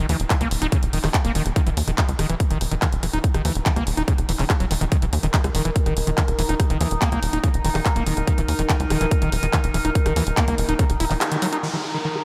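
A straight 4/4 pulse at 143 BPM drives this psychedelic, driving psytrance clip, where a punchy layered electronic kick and a tight, nasal sequencer bass underpin a squelchy, screaming acid riff (distorted, chorused, tape-echoed and pumping, with a filter sweep running through it), handclaps, a low-pass-filtered hi-hat and rim clicks, a wave-folded, phased drone of moving overtones entering at 5.3 seconds, and a brief downlifter after a band accent at 11.2 seconds, all bathed in a dreamy cathedral reverb.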